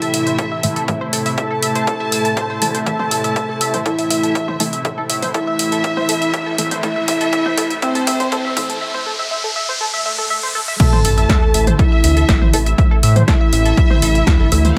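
Opening together at 121 BPM in A minor with A4 tuned to 437 Hz, a soft octave-layered synth lead with chorus and delay carries the melody over a rich, expressive violin section, a lush warbling unison pad, a tight sequenced synth arpeggio, a muted filtered dub chord stab and a tense, nasal bowed-like drone that stops at 8.8 seconds, while a punchy overdriven analog drum machine, a round analog bass and an up-front electronic kick drive this driving, melancholic melodic techno build-up of filter sweeps, with a background riser, swell and sub drop leading into the drop at 10.8 seconds.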